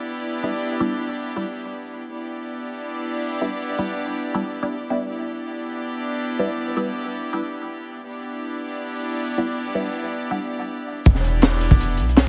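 This drum and bass and jungle fragment sits on a straight 4/4 metre. Its beat is held back until the drop at 11.1 seconds, and the mood is atmospheric and frenetic. A rich chamber string section plays sustained bowed chords on a single minor seventh harmony throughout, with a reedy, gut-string, period-style tone placed up front. Alongside it, a filtered dub chord stab adds muted, nasal sawtooth hits with a resonant filter pluck, moving notch, phaser, analog chorus and dub echo, until it stops at 10.4 seconds. At the drop, a deep, boomy 808-style sine bass lands up front alongside a crunchy breakbeat kit with a punchy kick, high-tuned snare and a saturated, gritty, rolled-off sound. A pitched-up, compressed sampler-style kit of hi-hat, shaker and snare sits in the background with high-pass filtering and a large-room sheen, and the whole piece carries light studio reverb and vinyl crackle as it cuts off mid-flow.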